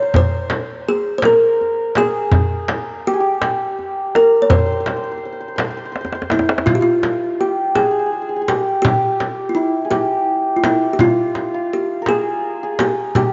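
The recording is close and softly reverberant, with a light studio ambience and a gently rounded top end. This short excerpt from a longer Persian modal piece sits in dastgah homayun on C, tuned to A4 = 435 Hz, and moves at a slow 55 BPM in a straight 6/8 with a festive, passionate mood. Up front, a woody, boxy kalimba carries the melody with short thumb-plucked notes. A hammered santur adds a shimmering, ringing second line beneath it. A small, bright frame drum keeps time throughout, and a deep, dry tombak played with soft hands adds weight through the first section, which closes with a drum fill from 5.9 to 6.7 seconds, after which the piece moves into its second section.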